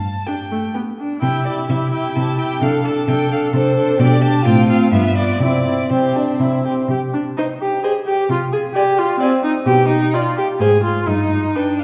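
An expressive viola, placed up front, carries the accompaniment with vibrato and portamento in this spirited, graceful string quartet movement in three, played with rubato and cut from a longer piece. Above it, the first violin sings a smooth, even melody, while the second violin traces a focused second line and the cello, also up front, anchors the bass. Each part is a single bowed player with a rich tone, set in a wet concert hall and heard from further back in the room, and the music turns toward a new section at 6.9 seconds.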